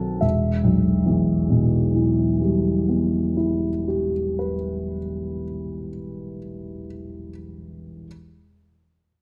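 A dark, mellow grand piano with a vintage character sits up front in this elegiac, solemn classical fragment, cut from a longer piece, playing an accompaniment from 0.0 to 8.1 seconds across a range of E1 to A5 in E minor at 64 BPM in a rubato 3/4, tuned to A4 = 436 Hz and set in a wet recital-hall reverb.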